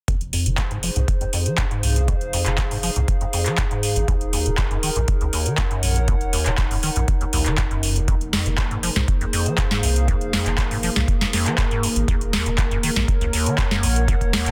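An up-front, booming analog drum machine drives this hypnotic, raw acid house excerpt at 120 BPM in 4/4, its crisp snare, handclaps and metallic hi-hats overdriven and carrying a short room sound, while a separate overdriven electronic kick adds a deep analog thump. Underneath, a rubbery square-wave acid bass plays a riff between Eb2 and F3, its resonant filter pluck striking fast and decaying with a saturated, shadowy edge and an ensemble chorus. A thick triangle sub bass holds long notes in the low register, pumping against the kick. A lo-fi, tape-like pad drifts in at 0.5 seconds, warbling and nostalgic with a wave-folded, mellow tone, chorus and its own reverb, and at 8.1 seconds a moody sawtooth pad with a detuned sub octave joins on slow-attack, sustained chords. The harmony sits in F minor, moving between Fm7 and Ebm7, and the dense, heavily limited mix stays dry and close.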